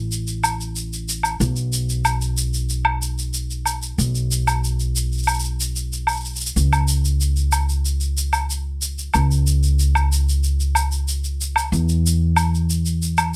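A woody, pizzicato upright bass sits up front in this short, autumnal and intimate folktronica excerpt in C# minor at 93 BPM, joined from 0.1 seconds by close, brushed shaker and woodblock in a small, dry room.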